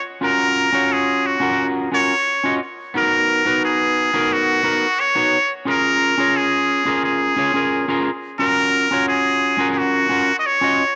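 A straight 4/4 pulse carries this relaxed, smooth chillout fragment, where a nasal, straight-muted trumpet sings the up-front pop-style melody with light vibrato through an analog delay, while a bright, picked clean electric guitar with a cassette-tape tint accompanies over Ebm7, Abm7 and Db6 chords, the pair sitting in moderate spring reverb and the studio ambience of a home cassette recording.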